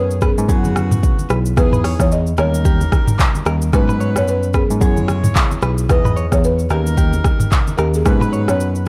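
Afrobeats at 111 BPM in G# minor, this mellow, sultry passage rolls with a 16th-note swing, cut from a longer piece. A buzzing marimba played with soft mallets carries the melody, its woody, round tone touched with delay, while a horn section with light vibrato adds a tight second line. A second marimba with medium mallets sits in the background as accompaniment, and a bell-like tine electric piano takes the bass role up front, bright and clean. The electronic afro-pop drum kit is prominent, with a deep kick, metallic hi-hats, handclaps, rim clicks, shaker and toms, joined at 0.6 seconds by very quiet, low-tuned congas. A picked, compressed electric guitar riff enters at 0.2 seconds in the background, coloured by spring reverb and delay, as the chords cycle from F#9sus4 through Emaj7 and D#7 to G#m11 in a dark, small-room production.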